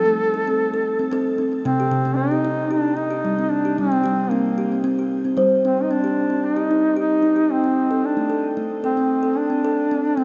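A straight 4/4 pulse at 113 BPM carries this meditative, hypnotic world piece in C kumoi, where a woody, ringing kalimba plays soft arpeggios and an up-front duduk sings a folk-style melody with vibrato and scooped notes, both parts washed in shimmer reverb and delay within a wet church reverb that lingers for 2.8 seconds.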